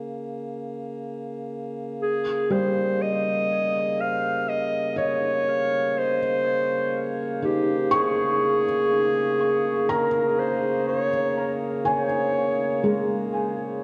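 Peaceful and weightless, this ambient passage in a slow, straight three-four is cut from a longer piece. A reedy, breathing pedal harmonium holds a low drone from the start, fading in gradually throughout. At 2.0 seconds a clarinet takes the solo melody, smooth-topped and punchy in a classical style and placed up front, its phrases trailed by dub echo as the harmony moves from B-flat minor over D-flat to a D-flat suspended second chord. From 2.5 seconds a felt-muted upright piano adds soft, dark arpeggios that span a broad range, intimate and thick with felt, with the action noise audible and its notes also carried off by dub echo. A wet spring reverb and an echo-heavy mix with a cassette-tape character give the whole recording a hazy, floating quality.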